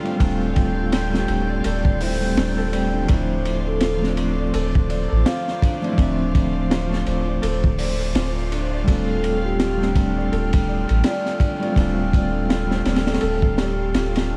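A swung 16th-note trip hop groove at 83 BPM drives this dark, cinematic excerpt, its gritty, punchy breakbeat kit and round dub sub bass sitting up front, while a clean electric guitar with tremolo and tape echo, detuned, chorused analog pad chords, soft felt-muted upright piano arpeggios in dub echo, a very quiet reversed granular swell and, from 1.5 s, a breathy sine lead with vibrato move between Fadd9/D and Dm7 in a small-room, echo-heavy mix dusted with vinyl crackle.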